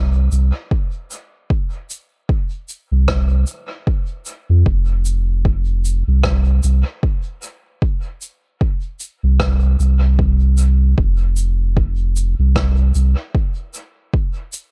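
A round, sine-like sub bass sits up front from the start, sustaining deep notes between F1 and F2 with a fast attack until it drops out at 13.2 seconds. This meditative, spacious ambient dub excerpt moves at 76 BPM in 4/4 with a swung sixteenth-note feel, anchored by a layered electronic kick that hits deep and close. Further back, a natural-sounding shaker and rim click with a rolled-off top is thrown into dub echo, giving the dry, echo-heavy mix its sense of space.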